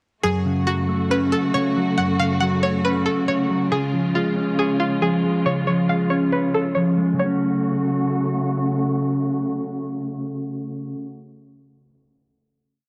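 This brief hip hop piece in a trap style moves at 138 BPM with a half-time feel in F# harmonic minor, and its mood is eerie and brooding. A twangy, string-like resonator pluck sits up front with a bright, fast-attack tone, its sawtooth edge and noise layer shaped by chorus and a filter sweep as it repeats a looping melody like a sampled loop until 8.5 seconds. Alongside it, a mellow, clean electric guitar, fingered and compressed, plays a rising arpeggio in eighths that also cycles like a sample, carrying the harmony from F# minor to C# and back to F# minor. A muted studio string section, played con sordino with vibrato and a soft attack, holds veiled, bowed chords as a sustained pad. The opening breakdown gives way at 7.2 seconds to a final chord that rings to about 11 seconds, all set in a small room with light reverb and a dry, gritty, low-passed sound flecked with vinyl crackle.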